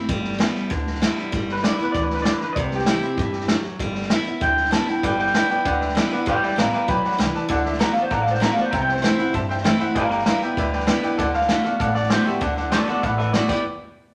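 A picked, bright, full-bodied steel-string acoustic guitar opens this upbeat, rowdy rockabilly cut in G major at 195 BPM, joined almost at once by a woody, thumpy upright bass and a punchy vintage drum kit with crash, hi-hat and a medium-tuned snare, before a twangy, slightly broken-up electric guitar from a small old amp takes the melody up front at 1.5 seconds and a jangly, metallic tack piano adds accompaniment from 5.0 seconds, all set in a large studio reverb as chords move among G6, C, D6 and C6.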